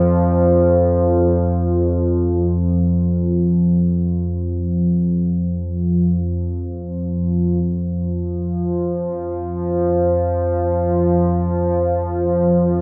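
In free time, this dark, cavernous ambient excerpt rests on a single analog drone playing solo from 0.0 to 12.8 s, spanning F2 to F3 with a detuned, wave-folded sawtooth tone that slowly evolves, its slow attack and long release keeping it sustained and up front. Chorus and tape echo color the drone, and a drenched cathedral reverb with a 5.8-second decay places it in a vast, echoing space, with the music moving into a new section at 7.6 s.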